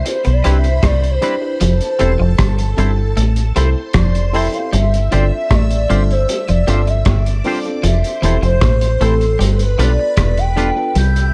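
A straight 4/4 lovers rock reggae pulse at 77 BPM is set by a muffled, cloth-damped drum kit of tight kick, rim click and hi-hat and an up-front, round dub bass, while a hollow, woody clarinet-like synth lead carries a soft, romantic solo with vibrato and tape echo over a swirling phased string machine, a dreamy FM electric piano with a pad layer, a bright twelve-string electric guitar riff in the background and clean, twangy electric guitar stabs, moving smoothly through Cmaj7, Fmaj7, G7sus4 and G7 in a dark, dry production.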